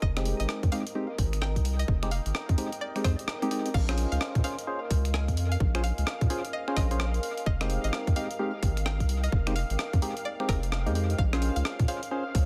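An echo-heavy, lightly reverberant mix carries this late-night, skippy two-step UK garage excerpt, where a tight, up-front electronic kick and a gritty sampler-style breakbeat kit of hi-hat, rim clicks, finger snaps and crash sit over a thick saturated sub bass, hollow organ stabs with phaser and tape echo sound over the shifts between Fm7 and Bbm7, a twangy string-like resonator pluck carries the melody in the background over a moody, evolving ambient pad with sidechain pumping, and a smooth analog pad joins at 3.7 seconds just as the kick returns from a brief dropout.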